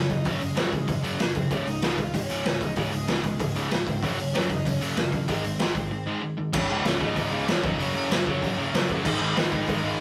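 Punk rock at 191 BPM in Db major, energetic and upbeat, cut from a longer piece and captured as a rough rehearsal-room recording with light reverb, where an up-front, bright cranked stack guitar drives the riff alongside a very quiet crunchy overdriven guitar, a growly, punchy fuzz bass in the background and a boomy, gritty garage drum kit with crash, hi-hat, kick and snare. A dark, distorted lead guitar carries a bluesy melody from the start, set back in the mix, while a brief break at 5.9 seconds leads into a new section at 6.5 seconds, where a double-tracked, high-gain guitar joins very quietly. The chords move from Gb5 and Db5 through Gb and Ab, then pass through Db, Gb and Ab in the closing stretch.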